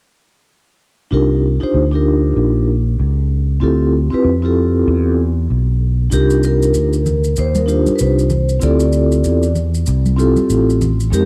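Jazz-hop with a smoky, mellow mood at 96 BPM in C minor, swung on the sixteenths and cut from a longer piece: from 1.1 s a ringing soft-mallet vibraphone with medium motor vibrato shimmers through Cm11 and Dm11 chords over a growly, round, up-front fretless electric bass touched with subtle chorus; at 6.1 s an airy vibraphone melody with slow motor vibrato and softly played maracas and congas join, all set in light reverb and small-room ambience within a dark production.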